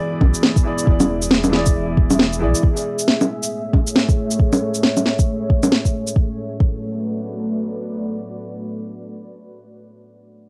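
Future garage at 136 BPM in B dorian, swung and melancholic with a rainy mood, this short cut opens with a felt-muted upright piano, intimate and mellow, with sidechain pumping and analog delay until 2.7 s, beside a round, deep dub sub bass with tube saturation. A dark, detuned sawtooth pad with chorus and built-in reverb sustains chords from E7 through Amaj7 to Bm7 across the whole 9.8 s, while up-front electronic bongos, shaker and a woody snare run to 6.1 s and a soft electronic kick carries on to 6.8 s. Moderate room reverb and a cassette home-recording sound give it a hazy, lo-fi cast.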